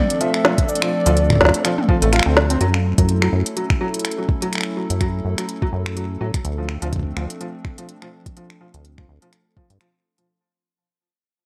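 Eerie and cerebral, this IDM excerpt moves at 125 BPM in 4/4 with a light swing on the sixteenths, set in a faint digital ambience. A warbling, nostalgic lead with vibrato sings a brief melody only until 2.1 s, while a hollow, flute-like pad holds airy sustained chords that pump against the beat, and a felt-muted upright piano plays intimate arpeggios, its action noise audible through a low-pass filter and digital delay. An organic electronic kit of cabasa, finger snaps, smooth hats, toms and a woody snare sits up front with overdrive, joined by a soft, overdriven electronic kick. A deep, rubbery acid bass with a resonant sawtooth bite enters at 1.1 s, dark and saturated. The kick drops out just before 2.6 s, where the harmony shifts from Dm7 to F#m7, a filter sweep moves across the piano, and the whole passage begins a long fade-out before returning to Dm7 at 6.4 s.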